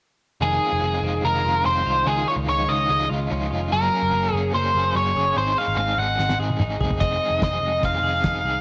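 A restless, bittersweet stretch of jangly indie pop opens at 0.4 seconds with all four stringed parts together, moving at 146 BPM in a straight 4/4 in F phrygian. A biting, up-front lead guitar carries the melody with overdrive and slapback echo, while a crunchy overdriven rhythm guitar with tremolo fills in the accompaniment beneath it. A twangy, compressed twelve-string electric guitar picks out arpeggios through spring reverb and its own slapback echo, and a vintage foam-muted electric bass sits low with a round, punchy tone. The chords move from Fm7 through Dbadd9, Gbadd9 and Ab before returning to Fm7 at 7.0 seconds. A cloth-damped, thuddy drum kit with a fat snare and tight kick only arrives at 6.2 seconds with a fill, then plays briefly before dropping out at 8.3 seconds, all set in a moderate echo chamber reverb in this fragment cut from a longer piece.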